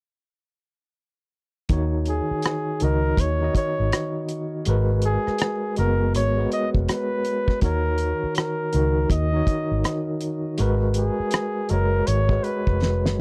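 At 1.7 seconds a gritty, barky overdriven tine electric piano with fast tremolo enters alongside a dark, round, foam-muted fingered electric bass and a cloth-damped, thuddy drum kit with a fat snare, tight kick, hi-hat and rim clicks. At 2.1 seconds a warm flugelhorn joins with a jazz-style solo melody, light vibrato and scooped notes, in this soulful, smooth neo-soul R&B excerpt at 81 BPM in Eb minor. The groove swings its 16ths over alternating Ebm7 and Abm9 chords, and a drum fill arrives at 12.8 seconds, all captured in a dry, close, 1970s-style studio sound.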